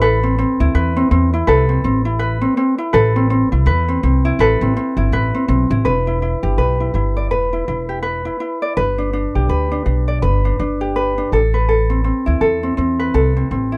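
A relaxed 82 BPM groove in 4/4 moves with a gentle swing on the sixteenth notes, giving this acoustic pop passage from a longer piece an easy-going, heartfelt lilt. A fingerpicked ukulele carries the accompaniment throughout, its light, warm tone sitting up front in the mid register. Beside it, a pizzicato upright bass on gut strings supplies the low end with a woody, thumpy sound that is dark and close. The harmony opens on Amadd9, then shifts into a second passage at 5.8 seconds that moves through Em and G before returning to Amadd9 at 11.3 seconds. The sound is dry and intimate, like a close 1970s-style studio recording with very little reverb.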